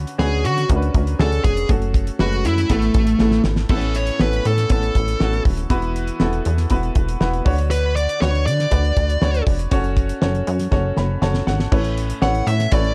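A straight 4/4 groove at 120 BPM from a damped, dry 70s drum kit with a fat snare and tight kick drives this hopeful piano-driven pop excerpt in A major, with drum fills at 3.2 and 10.7 seconds. A plucky, nasal analog bass with a punchy filter pluck sits up front beside a dark, smooth overdriven lead guitar carrying the melody. A clear, woody upright piano supplies short-sustain accompaniment and adds its own fill alongside the drums, all within a dark, warm studio production.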